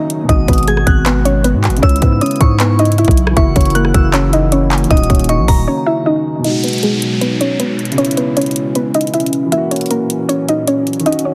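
A dense, heavily limited modern master with light digital ambience frames this dark, hard-hitting trap excerpt in a half-time feel. Up front, an electronic trap kit punches with a hard-clipped kick, metallic hi-hats, handclaps and rim clicks. A growling, buzzy 808-style bass with a fast attack and decaying tail anchors the first half before dropping out at 5.7 seconds. A soft, round pluck carries the melody through chorus and a low-pass filter, backed by a mellow vintage baby grand piano playing filtered accompaniment and a warbling, lo-fi tape-like pad holding detuned sustained chords in the background. A glassy, crystalline FM bell with chorus, tremolo and delay adds a high second line until 6.4 seconds, when an electronic downlifter appears and a filter sweep carries the second section over chords that move through G#m7, C#m7 and F#7.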